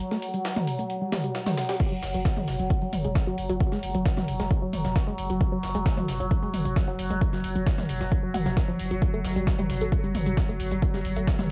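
Driving peak-time techno in a straight 4/4, this 11.5-second excerpt from a longer piece feels relentless and dark, with a light-reverb, home-cassette sound. It opens on a break in which a detuned sawtooth drone with moving, resonant overtones holds under a tight, sequenced synth riff with a filter pluck, softened by chorus, phaser and tape echo, while a filter sweep runs across that arpeggiated sound for the whole clip. A layered techno kit with metallic hats, shaker, toms and crash plays throughout, joined by a gritty, pitched-up, sampler-style breakbeat kit with a high-tuned snare sitting further back. At 1.8 seconds a punchy analog kick lands up front, and a deep, saturated sub bass with a fast attack follows at 1.9 seconds, pumping with sidechain compression along with the drone, riff and breakbeat hats. The harmony moves from F# minor to F#sus2 as the kick arrives, then lifts to Gsus2 at 9.0 seconds.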